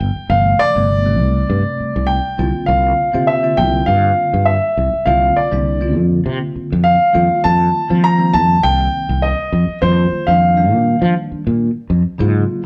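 A concert grand piano carries the melody up front in this bright, funky electric jazz fusion excerpt. Its tone is open and deep with a long sustain as it plays between C5 and Bb5 before falling silent at 11.1 seconds. Beneath it, a sustaining fretless electric bass plays with a growly, punchy, amped edge, sitting close and direct in the mix from G1 to F3 until 12.4 seconds. A bell-like tine electric piano enters at 0.3 seconds as quieter accompaniment, its clean, bright voice heard through built-in speakers. The music moves at 101 BPM in 4/4 with a light sixteenth-note swing, centred on F mixolydian over suspended chords that pass from Gsus4 to C9sus4 and F9sus4. The band plays live together in one large studio, where moderate reverb gives the sound some air.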